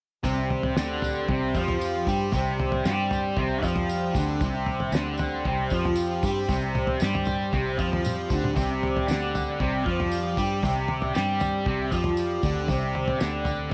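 A hazy, trippy psychedelic rock excerpt opens on a bright, double-tracked fuzz guitar riff with phaser sitting up front over a round, foam-muted fingered electric bass, a dry, cloth-damped drum kit with a fat snare and tight kick, and a jingly tambourine in the background, joined a moment later by reedy, breathing pedal harmonium chords, with light small-room reverb around the mix.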